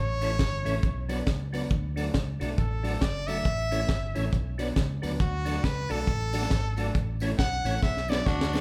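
A brilliant, forceful trumpet solo with vibrato opens this joyful, upbeat ska excerpt in D major at 137 BPM with a swung feel, over a round, punchy fingered electric bass, while a deep reggae drum kit with a high-tuned snare and tight kick sits up front from 0.2 seconds. Behind them, a dark electric guitar at the edge of break-up sits in the background, a mellow tonewheel organ plays percussive stabs through chorus vibrato, fast rotary speaker and tape echo, and a jingly tambourine sits very quiet. A drum fill starts at 7.8 seconds, and a growling, raspy tenor saxophone enters at 8.3 seconds as the band, playing live in one large studio room, is cut off.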